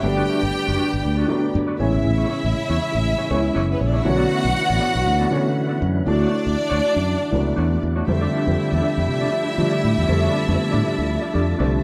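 Disco at 119 BPM with a light sixteenth-note swing, this joyful, danceable excerpt sets a lush, focused string section up front over a growly, bright fingered electric bass, while a dark baby grand piano with short sustain and a mellow, clean electric guitar with tremolo fill out the accompaniment. A smooth tonewheel organ with key click and fast rotary speaker holds sustained chords in the background, and the whole band plays together in one room with moderate large-studio reverb. The harmony moves through Gmaj7, Amaj7, Bm7 and Dmaj7 before shifting to F69 at 8.1 seconds.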